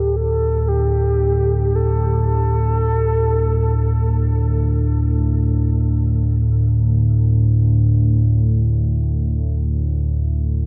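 In free time and tuned to A4 = 444 Hz, this ominous, vast dark ambient drone excerpt sets a mellow, horn-like synth lead with a round, warbling vintage tone, chorus and tape echo singing a brief melody between G4 and A4 until 4.3 s, over a deep, rumbling, up-front drone of detuned triangle and sawtooth with a nasal ring-modulated edge that holds from D2 to A2 across the full 10.7 s, all bathed in a huge, wet reverb with a dark production.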